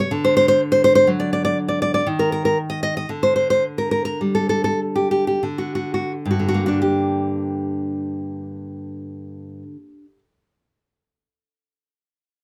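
A bright, full-bodied nylon-string guitar, fingerpicked up front with audible finger squeak and light reverb, opens this wistful, intimate romantic piece for solo classical guitar in G minor, moving in a rubato 3/4 at 40-62 BPM, slowing through its opening phrase until 6.8 seconds, when it settles onto a G minor chord for a new section before the fragment breaks off from the longer work at 10.2 seconds.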